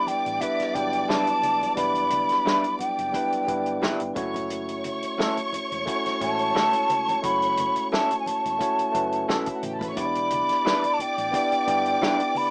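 Lush 1970s-style soul at 88 BPM in E dorian, with lightly swung 16ths: this cinematic, silky excerpt is led by a breathy, mellow concert flute up front with vibrato, while a distant violin section adds an expressive bowed second line with portamento. Underneath, a gritty, barky overdriven electric piano accompanies over Em7 and F#m7, a slightly broken-up lo-fi guitar riff enters at 1.1 s, and a dry soul drum kit with a tight kick joins bright, low-tuned congas and a dark, round hollow-body bass in the background. Light reverb and a rough home-demo mix give it a small-speaker sound.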